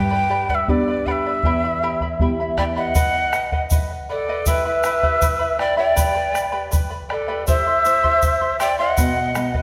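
Festive yet wistful, this short cut from a longer Andean folk piece moves in an unhurried two-beat metre. Up front, a breathy, mellow cane quena carries the melody with vibrato, a crisp chiff on each note and rolled-off highs, its pitch slightly unsteady. Beneath it a fingerpicked charango shimmers on doubled strings, while a thumb-plucked nylon-string guitar with fresh strings plays close at hand until 2.9 seconds and returns at 9.0 seconds. A round bombo sits in a small-room sound, and a reedy bamboo pan flute enters at 2.6 seconds as a soft-edged second line with its own vibrato. A grainy, bright tube shaker joins quietly and dry as the second section begins, all within a moderate scoring-stage reverb.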